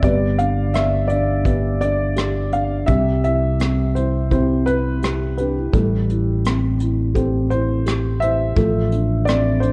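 Hopeful and tender, this acoustic folk-pop ballad at 84 BPM in C major sets a dark, woody upright piano melody with slapback echo and audible action noise over felt-muted upright piano arpeggios with a boxy, thick-felt tone, a round, punchy fingered electric bass up front, and a distant, roomy brush kit with tight kick and rim clicks, moving through G, C, Am7 and Dm7/A under light reverb and the warbly pitch drift of worn cassette tape in this 9.7-second cut from a longer piece.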